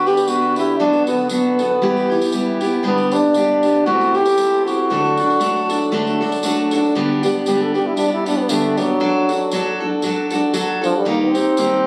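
Nostalgic and pastoral, this acoustic folk snippet moves at 117 BPM in 4/4 with a gentle swing on the eighths, in G major. A nasal, straight-muted trombone carries the classical-style melody up front over picked steel-string guitar with audible finger squeak, while a reedy, breathing pedal harmonium holds sustained chords in the background until 6.9 seconds and a jingly tambourine adds light percussion. From 7.0 seconds the smooth-topped trombone takes a solo as the harmony moves from G through D/F# to an Eb, and the piece is heard as a phone recording in a room with club reverb.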